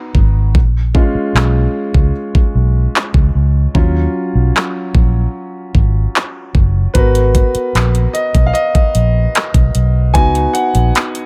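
A concert grand piano opens this late-night, longing fragment of contemporary R&B, its intimate, boxy tone carrying audible action noise, deep bass and long sustain as it takes a solo across rootless C#7sus4 and D#m9 voicings, A#m7 and G#m7 in G# dorian. At a straight 75 BPM in 4/4, a dark, foam-muted fingered electric bass sits up front with a round, punchy, amped sound, beside an electronic, produced drum kit, re-recorded in a small room, with a knocking kick, metallic hi-hat and handclaps. A break runs until 6.9 seconds, and the whole fragment sits in a digital ambience.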